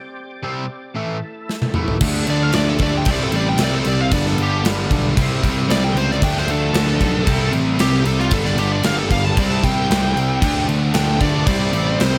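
Hard rock with a heavy, driving mood, cut from a longer piece: a very quiet tonewheel organ with slow rotary and chorus vibrato holds thick sustained chords from the start, and a bright, crunchy double-tracked guitar riff joins it before a tight, up-front gated 80s drum kit plays a fill at 1.5 seconds. At 2.0 seconds the band kicks in fully, with a warm, sludgy distorted guitar riff sitting in the background and a dark, round fuzz bass adding punch. From 2.3 seconds a bluesy, distorted lead guitar solos over a cycling Dm, C, G, C progression, with the drums' bright cymbals ringing in a gated stone-room sound.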